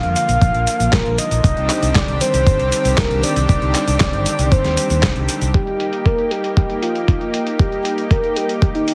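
A gritty, thumpy electronic kick sits up front in this italo disco excerpt, entering at 0.4 seconds with an overdriven, sampler-style punch re-recorded in a small room. Behind it, a dusty soul drum kit adds cabasa, handclaps, hi-hat and a medium-tuned snare, all overdriven and dulled by low-pass filtering for a muffled, vintage grit. A bright, punchy fingered electric bass with an envelope filter carries the low end under the Bb and Cmadd9 chords, then stops at 5.5 seconds as the harmony moves to Eb. A lush, thick pad of detuned sawtooth and square waves with an airy noise layer holds sustained chords with a slow attack and chorus, while a soft, round lead layered with a sub octave sings the melody with vibrato, chorus and delay. The mood is melodramatic yet danceable, set in light digital ambience and squeezed into a heavily compressed, radio-like sound.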